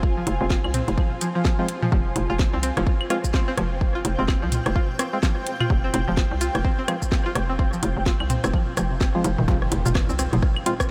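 A dreamy mix soaked in a huge ambient reverb gives this excerpt of minimal techno in F minor a cool, quirky air at 127 BPM, with a swung 16th-note feel in 4/4. Up front, a punchy layered kick drum sits beside a hollow, bouncy FM bass that knocks in the low register and pumps against the sidechain. A twangy, string-like resonator pluck with chorus and tape echo carries the riff, while a very quiet, mellow organ stab adds hollow percussive accents. A house kit supplies a cracking snare, metallic hi-hats and shaker, and a booming, tape-warm analog drum machine in the background adds bongos, claves, rim clicks and toms through an analog delay. A bright, cloudy granular pad drifts and evolves behind everything until 9.5 seconds, when the harmony moves from F minor to an F power chord and a drop arrives, marked by a very quiet electronic impact.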